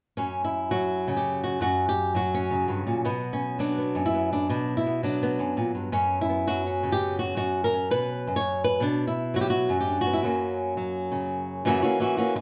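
A bright, up-front solo flamenco guitar with fresh strings rings through a moderate large-studio reverb in this intense, fiery excerpt at 167 BPM in F# Phrygian dominant, fingerpicked from F#2 to C#5 across a progression that moves from F#5 through Bm, F#sus4 and F# before landing on F#7 at 11.7 seconds.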